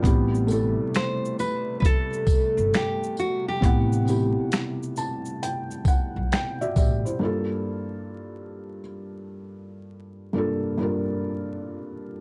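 A gritty, pitched-down boom bap drum kit sits up front with a thumpy kick, finger snaps and shaker, anchoring this nostalgic, reflective lo-fi hip hop excerpt, while a growly pizzicato upright bass, a faint jingly tambourine and a hollow, flute-like pad with chorus fill out the swung groove. A bright, fingerpicked nylon-string guitar carries the melody from 1.0 to 6.1 s over a mellow, felt-muted upright piano with audible action noise and a cassette-tape tint. After a piano fill, the piano plays alone from 7.2 s, all beneath vinyl crackle and light reverb.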